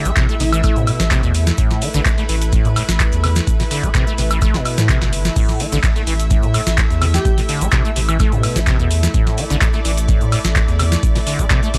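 Hypnotic and trippy, this acid house excerpt in A minor moves at 127 BPM in straight 4/4, tuned to A4 = 435 Hz. It is driven by a deep, up-front electronic kick and a booming analog drum machine of crisp snare, metallic hats, handclaps, crash and woodblock, with a very quiet, gritty sampler-style soul kit adding hi-hat, shaker and snare, and a grainy egg shaker in the background. Beneath these sits a thick, saturated triangle sub bass, while a squelchy, resonant sawtooth acid riff carries a filter sweep, tube warmth, chorus and analog delay. A lush, detuned unison pad holds sustained chords, and the pad and both basses pump against the beat. An airy, dreamy lead surfaces only briefly at 0.4 and 7.1 seconds, all set within a dry, cassette-tinged hardware sound.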